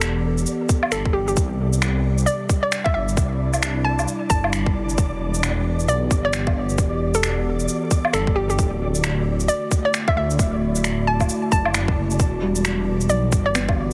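Swung sixteenths at 133 BPM drive this nocturnal, rainy future garage piece in E minor, with a tight, overdriven electronic kick entering up front at 0.7 seconds to join overdriven electronic finger snaps, shaker and woodblock that play from the start, both re-recorded in a large room. A deep, rumbling detuned saw bass with tube saturation and a warbling, nostalgic tape-like pad pump against the sidechain under Em7, Cmaj9 and Dadd9 chords, while a hollow, bouncy square pluck carries the melody through chorus and dub echo and a flickering, grainy texture hovers in the background. At 12.4 seconds a soft, felt-muted upright piano with audible action noise slips in, and the mix has a heavily compressed radio sound with light digital ambience.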